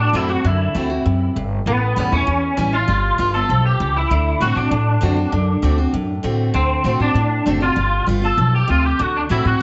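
Rockabilly with a rollicking, retro spirit, this short cut from a longer piece drives along at a brisk pace in straight time. An electric guitar through a small old amp carries the melody, its twangy, slightly broken-up tone sitting up front with an ensemble chorus and tape echo adding a lo-fi shimmer. Beneath it, a picked steel-string acoustic guitar fills in the accompaniment with a full-bodied dreadnought sound and the warm character of old strings. An upright bass with gut strings, played pizzicato, thumps out the low end in a dark, woody voice placed prominently in the mix. The harmony moves through dominant-seventh chords on D, A and G, and the opening passage is repeated from 6.5 seconds. Light reverb and small room ambience give the trio an intimate feel, with a top end that stays soft and rolled off.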